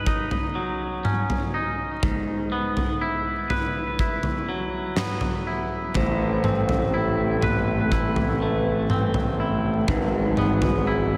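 Post-rock at a slow 61 BPM in E major, this soaring, hopeful passage opens with a twangy, scooped clean electric guitar playing delayed arpeggios up front, joined almost at once by a huge arena drum kit with a fat snare, punchy kick and toms, as the chords move from Badd9/F# to Eadd9/G#. At 6.0 seconds the harmony turns to Amadd9, and a growly fuzz bass, a bowed string section with vibrato and portamento holding sustained chords in the background, and ringing, close-miked vibraphone arpeggios with delay all enter. The whole dreamy mix is soaked in a lush hall reverb, and the passage is cut from a longer piece.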